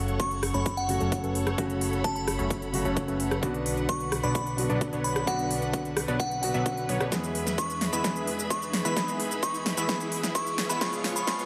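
A natural-toned baby grand piano, lush bowed symphonic strings, a detuned supersaw stab riff sweeping through its filter and a fat analog bass all pump together under sidechain from the start of this anthemic, euphoric festival progressive house build-up, joined by an up-front big-room kit of crisp hats, snare, rim click and cabasa that breaks into a fill at 7.1 s, a crystalline FM synth bell melody with chorus and delay, an overdriven punchy kick and a faint riser, all over an F#m–Bm–E–C# progression in a recital hall reverb.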